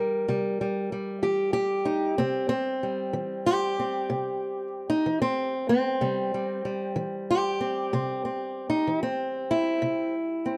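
The rhythm rolls in a slow 12/8 at 63 beats per minute, counted in dotted quarters, with a straight feel. This is acoustic country blues in C major, a swaggering, laid-back snippet cut from a longer piece and tuned a hair sharp to A4 = 441 Hz. A single fingerpicked, ladder-braced acoustic guitar plays solo for the full 10.6 seconds, resting on a C chord and ranging from C3 up to Bb4. It has old strings and a woody, boxy voice, and it sits up front in the mix. Light reverb and a dark, warm production shape the overall sound.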